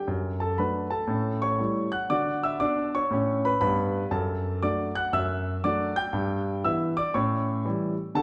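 A swinging 4/4 pulse with lilting, uneven eighth notes drives this brief, playful stride piano passage, cut from a longer jazz performance. A concert grand plays alone from start to finish, its tone clear and natural with a deep bass register and an up-front presence. The harmony moves through D over F#, A7 and D, then returns to D over F# before passing through Em over G and landing on A7 near 7.1 seconds. The piano spans a broad range, from the low bass up into the high treble. It sits in a reverberant recital hall whose lush tail of about 1.6 seconds gives the 8.2-second fragment a spacious, church-like glow.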